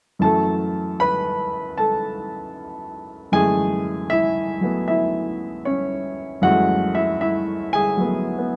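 Solo jazz at a relaxed 77 BPM in 4/4, with a cool, swinging eighth-note lilt in F# minor, tuned slightly low to A4 = 436 Hz. A warm, natural-sounding baby grand piano sits up front and plays alone from 0.2 to 8.6 seconds, spanning F#2 to B5 and resting on a rich F#m9 chord. Close, detailed microphones and a light reverb frame this brief fragment, cut from a longer piece.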